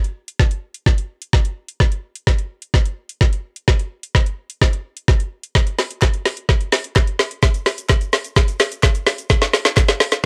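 A straight 4/4 pop groove from a smooth R&B drum kit, electronic and up front with a knocking kick, woody snare, metallic hats and shaker, drives this energetic build-up and fill, given a cassette tape tone and light reverb in a home-recorded sound, while a crisp group handclap joins in the background at 6.0 seconds in this short cut from a longer piece.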